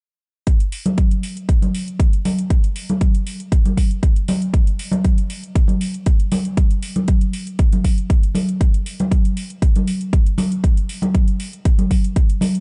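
Sunny and groovy, this nu-disco excerpt at 118 BPM in straight 4/4 runs on a punchy, tape-warm electronic kick placed up front, metallic layered hi-hats sitting low in the mix, and bright, soft-handed congas close by in a small room, all within a dark production whose top end stops at 11.0 kHz.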